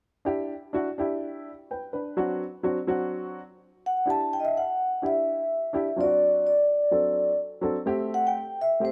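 This soul excerpt opens at 0.3 seconds with a dark, woody upright piano, slightly detuned and with a short sustain, laying down accompaniment on Em7 and D7/F# in E minor. The feel is driving and passionate, moving at 126 BPM in a straight 4/4. At 3.9 seconds a vibraphone played with soft mallets enters up front to carry the melody between C5 and A5. Its metallic, ringing tone carries a slow motor vibrato and a slapback echo. The chords cycle back through Em7 and D7/F# before turning to Am7 at 7.9 seconds, and a light reverb gives the close-sounding pair a touch of space as the clip, cut from a longer piece, breaks off.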